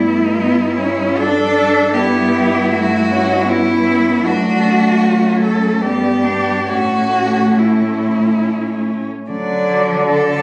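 In a flexible, rubato 3/4 at roughly 66-81 BPM, this warm, lyrical excerpt from a longer classical piece for cello ensemble in D major has four bowed cellos playing throughout: an up-front melody cello with soft attack, vibrato and expressive portamento, a rich, focused second line beneath it, a more distant accompanying cello that also slides expressively, and a dark, close bass cello. The harmony moves from Em7/G through A13/G, D/F# and G to A, arriving on D at 9.3 seconds. A wet recital-hall reverb blends with a club-like ambience and compression, and the sound has the character of a phone recording made in the room.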